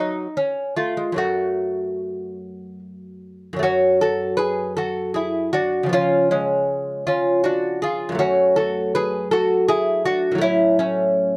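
A solo lute opens this short, baroque-style classical dance in triple time, fingerpicked on gut double strings, some doubled at the octave, with a mellow, delicate tone that sits up front in a dry room. The mood is serene and radiant, the pulse flexible and rubato, as the harmony moves between C# and F# minor, settling on F#m/A near 10.4 seconds. A brief opening phrase gives way at 3.6 seconds to a longer second section, and the recording is cut from a longer piece.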